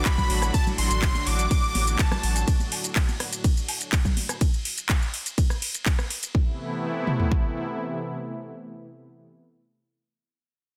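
A dense, heavily limited modern master with little reverb opens this short cut from a longer progressive house piece, dreamy and emotional at 124 BPM in straight 4/4, centred on A dorian. The drop runs from the start to 6.3 seconds over a D/A chord: a bold, detuned sawtooth unison lead carries the melody between A5 and D6 with vibrato and digital delay, shadowed briefly by a very quiet, airy supersaw on B5 with a moving notch, while a round, nasal analog bass holds A1 under sidechain pumping. Up front, a tape-warm electronic house kit drives a punchy kick and toms, with metallic hats, handclaps, ride cymbal, rim click and shaker all pumping against the sidechain. Soft-handed congas and woodblock sit in the background until 4.4 seconds. Beneath it all from the opening, the smooth, detuned sawtooth pad sustains its chords from A2 to F#4, shimmering with chorus and tremolo and breathing with sidechain pumping. 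From 6.3 seconds the harmony moves to Amadd9, and the pad carries on through to 9.3 seconds, outlasting the kick and toms, which end at 7.4 seconds.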